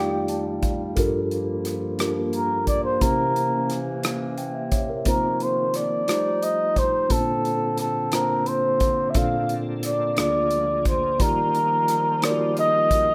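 Reverent and soulful, this slow gospel piece in 6/8 features a breathy, whispered trumpet carrying the melody up front with scooped notes and vibrato, over a mellow tine electric piano that adds short fills and rich extended chords. A mellow woodwind section holds sustained chords beneath, while an acoustic drum kit with a punchy kick and rim clicks keeps time. At 9.2 seconds a bright, shouting tonewheel organ slips in quietly behind through a slow rotary speaker, all within a rough, roomy home-demo sound.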